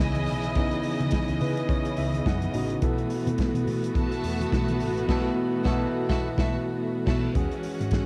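A glamorous, driving disco excerpt at 106 BPM opens with nearly the whole band at once: a dark, punchy soul drum kit with a rolled-off top and cassette-tape color, a round hollow-body bass sitting in the background, a barky, gritty tine electric piano overdriven through a combo amp, and a lush, close string section holding sustained chords over C#m9, B7sus4 and E69. A distant, focused violin section with vibrato adds a second line through analog delay, while very quiet, low-tuned congas ring beneath from 0.2 seconds. The electric piano breaks out in a fill at 1.1 seconds, and the full band hits an accent from 5.1 seconds, all within a light, home-recorded cassette ambience with a swung sixteenth-note feel.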